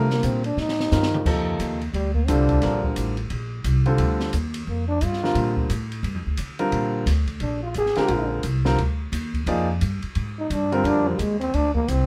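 Modal jazz with a spiritual, searching mood, this excerpt swings at 176 BPM in 4/4, moving from an F13sus4 sound in F mixolydian to Bb13 in Bb mixolydian at 6.7 s. A growling trombone takes the solo up front, its breathy, raspy tone close-miked with a soft attack, playing until 8.3 s and returning from 10.4 s. A grand piano accompanies with an intimate, natural sound and audible action noise, dropping out at 11.2 s. An upright bass, woody and thumpy with steel strings, is plucked throughout near the front of the mix. A small-room acoustic drum kit sits further back, dark and smooth, with dark cymbals, a high-tuned snare and a boomy kick, adding a fill early on, all under light reverb.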